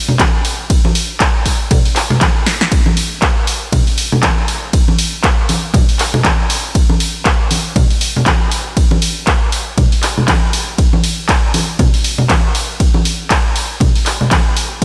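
Bright, low-tuned acoustic congas with a vintage, band-limited tone open this smooth, hypnotic house groove at 119 BPM with a swung sixteenth feel, joined at 0.2 s by an up-front analog electronic kick and a punchy drum machine of snare, handclaps, hi-hat and ride cymbal, both re-recorded in a large room, with a drum fill at 2.5 s and light reverb across a short cut from a longer piece.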